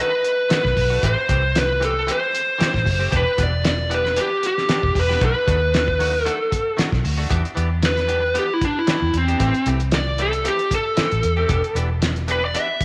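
Straight-eighth soul blues in E minor at 115 BPM, mournful and soulful, in which a dark, overdriven lead guitar through a small cranked amp sings the melody and takes a solo from 7.3 seconds, over bright, twangy clean electric guitar stabs with subtle chorus, a muffled, cloth-damped drum kit with a fat snare and tight kick, and a round, foam-muted vintage bass, all in a moderate echo-chamber reverb as the chords move from B7#9 through Am7 and Em7.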